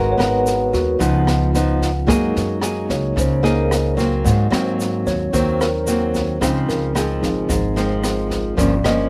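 Melancholic and intimate, this short bossa nova excerpt moves at 111 BPM in a straight 4/4 feel. A tine electric piano carries the solo throughout, its clean tone colored by a medium tremolo and the character of a combo amp, while a fingerpicked nylon-string guitar sits up front in accompaniment with a small, warm sound and a slapback echo. Underneath, a pizzicato upright bass with gut strings gives a woody, thumpy foundation. An open acoustic jazz kit enters at 0.2 seconds with a high-tuned snare, rim clicks and a boomy kick, joined by a grainy, bright tube shaker that stays compressed and saturated in the background. The harmony drifts through rich extended chords from Abm9 and Db9 to Gb69, Ab9 and Dbmaj7 before landing on Gm7b5, and the dry outdoor recording keeps every part close and unadorned.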